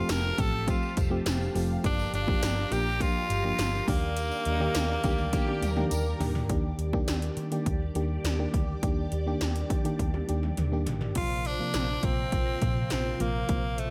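Glossy and lightly reverberant, this romantic 1980s-style pop fragment moves at 103 BPM in a straight 4/4. It rests on a warbling FM electric piano with tremolo, a dark, foam-muted picked electric bass, up-front electronic pad drums with a punchy kick, metallic hats and gated reverb on snare and toms, and a distant, jingly tambourine until 6.3 seconds. A raspy, gritty tenor saxophone with vibrato and delay carries the melody up front, pausing at 6.2 seconds and returning at 11.2 seconds over a Bbsus2 chord, while a mellow sawtooth string machine with cellos, phaser and ensemble chorus holds sustained chords in the background, a lush bowed violin section with delay adds a brief second line, and drum fills mark the turns as the harmony moves from Fadd9 through Gm7 and Ebmaj7.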